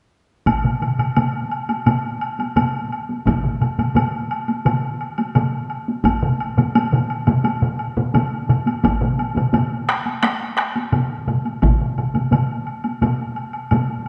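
A straight 4/4 pulse at 86 BPM drives this ceremonial, powerful excerpt of Japanese traditional taiko drumming, where four taiko ensemble parts struck with heavy sticks sound acoustic in a small room, one up front until 11.8 seconds and two set in the background, while a woody, distant woodblock carries on until 14.1 seconds, all bathed in a wet scoring stage reverb with a dark top end.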